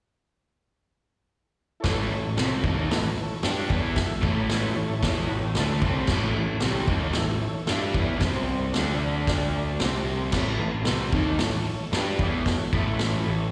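A straight 4/4 beat at 113 BPM drives this raw, swaggering garage rock excerpt, cut from a longer piece and heard as a live gig through the venue's PA with recital hall reverb. From 1.8 seconds a saturated, dark-cymbaled vintage drum kit and a growly fuzz-drenched picked bass sit beneath a bright, double-tracked overdriven guitar riff with slapback echo that enters at 1.9 seconds. Meanwhile a mellow combo organ holds sustained chords with heavy vibrato in the background and adds a fill from 5.0 to 6.1 seconds. The harmony moves from A through C5, D5 and C5 again before returning to A.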